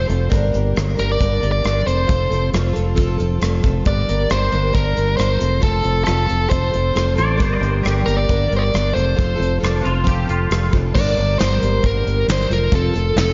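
A biting, overdriven lead guitar carries the melody over a shimmering, octave-doubled twelve-string acoustic and a round, punchy fingered bass, with a soft brush drum kit joining at 0.1 seconds, in this wistful, reflective folk rock and heartland rock passage at 136 BPM in G minor. The chords alternate between Gm and F, and from 7.2 to 10.8 seconds a twangy, clean electric guitar adds a second line through an ensemble chorus. The lead guitar's delay and a lush hall reverb give the short, dreamy cut from a longer piece a reverb-soaked haze.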